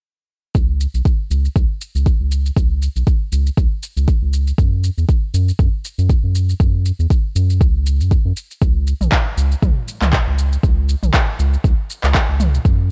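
A swung groove at 119 BPM in 4/4 drives this afro house cut, which is taken from a longer piece and carries a warm, spiritual mood. A deep electronic kick sits up front from 0.5 seconds, joined at 0.6 seconds by a layered, overdriven deep house kit of handclaps, shaker and toms that sits lower in the mix. Underneath, a round analog bass moves between B1 and F#2, its square, sine and triangle tones wave-folded and thickened with tube saturation. The bass has a fast attack, sustains darkly, and pumps with sidechain compression. The sound is dry and close, with the parts running together until the bass ends at 12.9 seconds.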